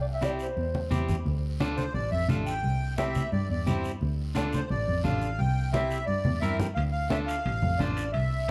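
A dark, lightly reverberant production frames this passionate, danceable cumbia clip at 174 BPM in D minor, opening with a gritty, growling clarinet solo over a clear, bowed double bass up front, twangy, slightly broken-up electric guitar, bright, damped congas and a raspy guiro, before a reedy, sweet accordion with light tremolo tuning takes the melody at 1.8 s over alternating C and D minor chords, and very quiet, ringing timbales join at 6.8 s.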